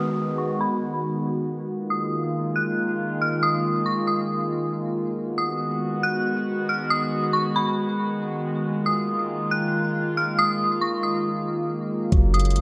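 A dreamy mix soaked in plate reverb frames this spacious, ethereal piece of atmospheric cloud-rap at 138 BPM in a half-time feel, where a warbling, nostalgic lo-fi pad with sidechain pumping holds sustained chords over Abm7 and Bb7sus4 while an eerie, inharmonic FM bell carries the high melody through chorus, tremolo and delay. A faint electronic downlifter sits in the background for the opening 1.7 seconds, and a filter sweep runs until 5.2 seconds. At 12.1 seconds a boomy 808-style bass and a smooth R&B kit with a knocking kick and smooth hats arrive up front, joined by round, gentle electric-piano-like keys playing arpeggios just before the cut.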